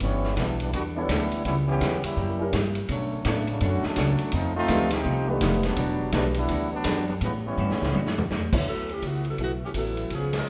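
Swinging and brassy, this big band swing excerpt opens on a brilliant, tight trombone section taking the lead as a solo from the start, close-miked and up front. Beneath it, a woody, thumpy upright bass with gut strings plays pizzicato while a roomy, distant drum kit with dark cymbals, a medium-tuned snare and a boomy kick keeps the swing going, adding a fill from 7.6 to 8.3 seconds. A clean, compressed hollow-body electric guitar and an intimate concert grand piano, with audible action noise and deep bass, sit in the background as accompaniment, the piano dropping out briefly before returning. The harmony moves through rich extended chords such as C#m7b5, F#7b9 and A13 before settling on D69 as a clear, vibrato-laden saxophone section takes over the melody at 8.7 seconds. A band accent lands at 10.3 seconds, and the whole is bathed in the sound of a reverberant recital hall.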